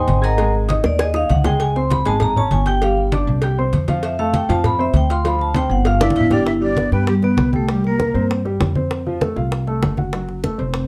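Afro-Cuban jazz with a sunny, danceable drive, cut from a longer piece, where a ringing, metallic vibraphone carries the melody over a dark, short-sustained grand piano, a woody up-front pizzicato upright bass, low-tuned thick-skinned congas and tight, high-tuned cowbell and bongos, until a breathy, mellow flute with a crisp attack and unsteady vibrato adds a second line from 6.0 to 8.3 seconds in a dark, warm production.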